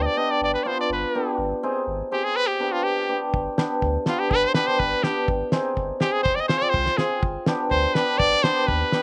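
Soulful and festive, this short klezmer excerpt in 2/4 puts a bright, punchy cornet up front on the melody, with a hammered, shimmering cimbalom carrying the accompaniment through a slapback echo and a clean, deep sine sub bass underneath. A damped 70s drum kit enters at 3.3 seconds with a fat snare and tight kick, its dry, rolled-off sound fitting the outdoor recording, which has little reverb.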